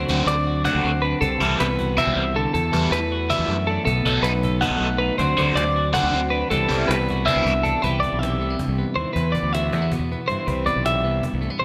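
Two picked, compressed twelve-string electric guitars open this wistful, restless math rock and midwest emo excerpt at 318 BPM in 7/8, one warm and up front on chordal accompaniment and the other twangy with high arpeggios, alongside a dark, round fuzz bass played with fingers and kept up front, while a scooped, double-tracked overdriven guitar riff with phaser and a snappy cajon under soft hands in the background join at 0.1 s; the riff drops out at 7.5 s during a cajon fill that begins at 7.3 s, as chords shifting from D7 and Cmaj9 through Em11 and B7 give way to Cmaj7 and Em7, all set in a lush hall reverb with a bright 1980s-style digital sheen.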